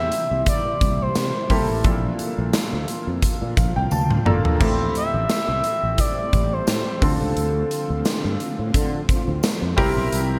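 A bright digital production in the 1980s manner, set in a moderate, lush hall reverb, frames this short excerpt of uplifting, romantic pop at 87 BPM in 4/4 with a light sixteenth-note swing. A big rock drum kit sits up front with a punchy kick, a medium-tuned snare and bright cymbals under gated reverb, joined from 1.2 to 9.6 seconds by a very quiet, jingly tambourine heard close and dry. A growly fretless electric bass with lush chorus sustains beneath a warm concert grand piano, whose intimate, natural tone carries audible action noise and deep lows, with a piano fill from 3.2 to 4.6 seconds, overlapped by a drum fill from 3.9 seconds that ends alongside it. In the background a shimmering ambient pad holds ethereal, detuned chords with slow attack and octave-up shimmer. An expressive synth lead with a smooth, sawtooth-and-triangle tone, soft attack and vibrato sings the melody through chorus and delay until 7.7 seconds, over chords moving from C7 through Bbmaj7, Am7 and Dm7 back to C7.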